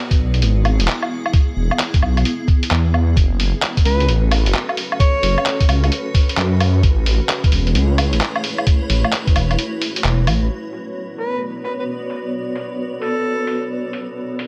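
Future garage at 131 BPM in B dorian, nocturnal and wistful, with a 64% swing on the sixteenths and a granular cloud pad holding blurred, bright sustained chords with sidechain pumping above a menacing, saturated detuned saw bass, while a muffled, pitched-down thumpy kick and a tape-warm sampler kit of handclaps, filtered hi-hat and woodblock drive the groove. A grainy, flickering texture hovers in the background from 3.5 seconds, and a clear alto saxophone plays short classical-style solo phrases with 12-bit grit and tape echo, first at 3.9 seconds and again at 11.2 seconds. The kick drops out at 9.6 seconds before the move to Bmadd9 at 10.5 seconds, where a filter sweep runs across the drums in this fragment cut from a longer piece.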